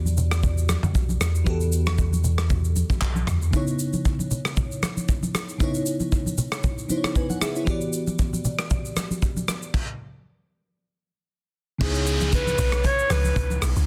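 A crystalline FM electric piano with chorus and phaser opens this late-night, soulful amapiano excerpt in C# minor at 116 BPM, moving between Em7 and C#m7 over a round sine sub bass that drops out at 3.5 seconds. A loose indie drum kit with a tight kick, handclaps, shaker, rim clicks, toms and softly clipped snare sits up front beside bright, damped congas, and after a stop at 9.7 seconds the groove drops back in. At 11.8 seconds a breathy, smooth alto saxophone with vibrato and delay takes the melody over a dark, percussive log drum bass and a falling electronic downlifter, all within a dense, heavily limited and dry mix.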